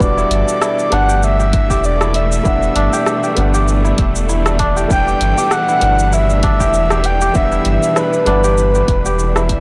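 From the first second, a breathy, flute-like synth lead with subtle chorus and digital delay carries the melody over a hypnotic, meditative organic downtempo groove at 98 BPM in E minor, held on a single Em7. Around it sit a crisp, ringing kora playing delayed arpeggios, a soft felt-muted upright piano with audible action noise, lush bowed strings, and a round sub bass, the piano, strings and bass all pumping against the sidechain. Underneath, a deep electronic kick and a deep house kit of dark hi-hats, rim click and shaker keep a swung 16th-note feel, all in a light small-room ambience and a blown-out, overdriven mix.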